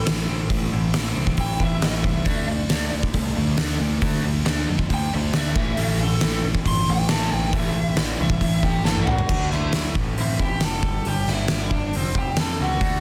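Quiet-loud alternative rock with a brooding, dark mood, heard in a short cut where a dark, overdriven lead guitar with tape echo solos over a thick fuzz riff, a growling, punchy picked bass and an oversized low-tuned drum kit with a fat snare, boomy kick and gritty, saturated room sound pushed up front. A crunchy overdriven guitar riff joins at 2.2 seconds. After a drum fill the fuzz and crunch guitars drop out at 9.3 seconds, and a clean, compressed twelve-string electric guitar returns with arpeggios alongside the lead, bass and drums over chords moving from Dadd9 through Am7 and Gsus2 to F. The sound is dense and heavily limited, set in a moderate large studio reverb.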